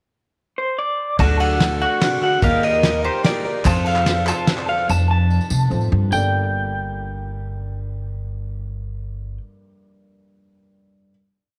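A slightly broken-up electric guitar through a small old amp carries a motif-based melody with tremolo and tape echo, opening this stirring, bittersweet indie folk piece in G minor at 146 BPM in 3/4 before the band enters at 1.2 s. Growly pizzicato upright bass sits up front beside a dark brushed drum kit with a punchy kick, while a full-bodied fingerpicked plugged-in steel-string acoustic joins a shimmering twelve-string strumming sixteenths and a woody mandolin ostinato in the background, as the pre-chorus moves through D, Eb and F. From 3.6 s a boxy baby grand piano adds held chords in open voicing, briefly joined by hollow group handclaps and a jingly tambourine. The band settles on a final Gmadd9 chord, and once the guitar and bass stop at 9.4 s the piano rings on alone until 11.1 s in a light studio reverb.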